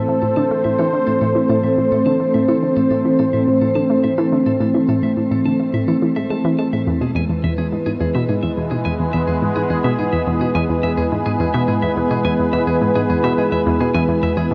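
A sweeping, resonant pad sits up front, holding sustained chords through a detuned sawtooth tone that warbles with a vintage character, its chorus and shimmer reverb giving it an evolving, slowly blooming presence. Also up front, a round, nasal analog pluck plays a low riff with a fast attack and short decay, also treated with chorus, analog delay and shimmer reverb. A bright, twangy clean electric guitar picks high arpeggios at a much lower level, fading in gradually across the whole 14.5 seconds, its notes trailed by analog delay and shimmer. The harmony moves from A minor to E at 6.9 seconds, giving this ambient, sequencer-driven space music a hypnotic, mysterious pull in a steady, straight 4/4. A long plate reverb wraps the mix in a wet, spacious atmosphere, and the passage is cut from a longer piece.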